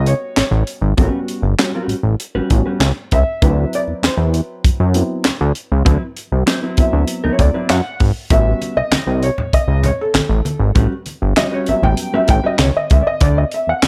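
A dark upright piano and a fat analog bass open this playful, strutting funk cut at 98 BPM in 4/4. The piano plays stabs and carries the solo throughout; its woody, worn tone sits up front with audible action noise, a slightly detuned character and a plate reverb. Beneath it, the detuned sawtooth bass is thick and up front, with a filter sweep, fast attack and sustained notes, while a tight, acoustic drum kit with a high-tuned snare, tight kick, hi-hat and handclaps drives the straight feel from a small room. A clean, compressed electric guitar enters at 1.0 seconds, adding mellow, fingered accompaniment low in the mix, and bright, saturated congas join in the background at 8.3 seconds. The harmony moves from A13 to D13 and back in A mixolydian, tuned slightly flat to A4 = 435 Hz, and lands on Dadd9 as this fragment of a longer piece ends under light reverb.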